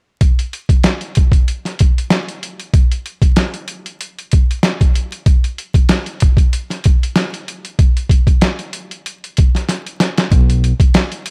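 Boom-bap hip-hop with a soulful, nostalgic swing: gritty, pitched-down sampler drums with a thumpy kick and medium-tuned snare sit up front under vinyl crackle in a dry room, rolling through a fill at 9.7 seconds before a dark, round fingered electric bass enters briefly and deep at 10.3 seconds in this excerpt from a longer piece.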